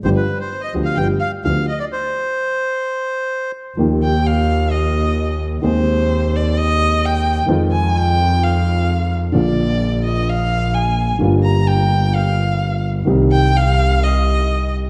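A dark, warm production in a moderate scoring-stage reverb frames this dramatic, melancholic tango excerpt at 129 BPM in 4/4, played with a rubato feel. A reedy, mid-forward bandoneon carries the melody until 3.5 s over a woody, worn and slightly detuned upright piano with audible action noise and a biting, earthy bowed double bass, and after a stop the music settles into Eb major at 3.8 s for a violin solo. Bowed with vibrato and portamento, the expressive violin sings its line over chords moving from Ebadd9 through Fm7 and Gm7 to Cm.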